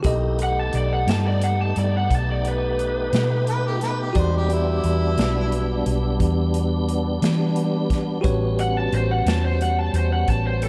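Soaked in a huge ambient reverb, this dreamy, laid-back and gritty slow blues moves at 59 BPM in 12/8, cut from a longer piece. A dark, round hollow-body electric bass sits up front beside an airy country drum kit with a punchy kick, while a bell-like tine electric piano and a full tonewheel organ with slow rotary speaker and chorus vibrato carry the harmony through Baug7, Em7 and A13. An overdriven, lo-fi lead guitar takes the melody up front from 0.4 s, and a mellow, distant harmonica with light vibrato adds a second line between 3.5 and 5.8 s.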